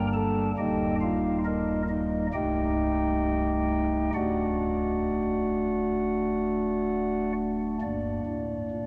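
Drenched in a long cathedral reverb and tinged with the warbling pitch drift of worn old cassette tape, this grave, solemn classical chorale fragment features a solo pipe organ whose soft, hollow stopped-flute voice, with a touch of chiff, sits up front in a mellow baroque voicing, moving freely in a rubato 4/4 through a few slow chord changes before returning to its opening chord at 7.8 seconds and ending abruptly at 8.9 seconds.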